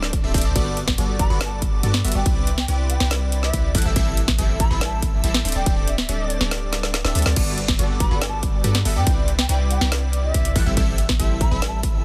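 A half-time 4/4 pulse at 141 BPM drives this lush, bright future bass excerpt in G major, where a punchy detuned supersaw stab riff, a deep boomy 808-style bass and a soft, dreamy lead playing background arpeggios with chorus and digital delay all pump against a layered electronic kick and an up-front trap kit with woody snare and metallic hats, while a distant, mellow baroque flute carries a tape-echoed melody from 1.2 s over a Gmaj9–Cmaj9–Am7–D7sus4 progression, with the kick dropping out under a drum fill at 6.9 s before the drop repeats at 7.4 s in a dense, heavily limited, dry mix.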